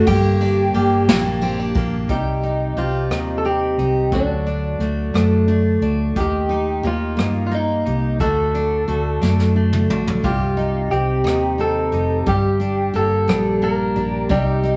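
Dramatic and aching, this excerpt of a slow six-eight pop ballad in G minor at 59 BPM sets a slightly broken-up electric guitar melody with a warbly pitch drift over full-bodied picked steel-string acoustic guitar, bright direct clean electric guitar arpeggios, a round foam-muted vintage bass and a brushed jazz kit with dark cymbals and a boomy kick that adds a fill at 9.2 seconds, all played live in a small stone room through moving Gm, Cm, D and Eb chords.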